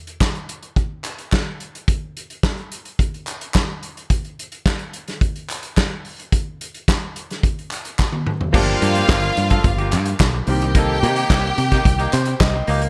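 Disco at 108 BPM in C minor with a sultry, glamorous mood, opening on a vintage drum kit with a punchy kick and dark cymbals and distant, hollow group handclaps before a drum fill at 8.0 seconds brings in a foam-muted, bright fingered electric bass, a slightly broken-up, lo-fi electric guitar, a clear concert grand piano with audible action noise and plate reverb, and lush, biting symphonic strings over Gm7 and Cm7, with the piano taking a fill from 11.8 seconds in this cut from a longer piece.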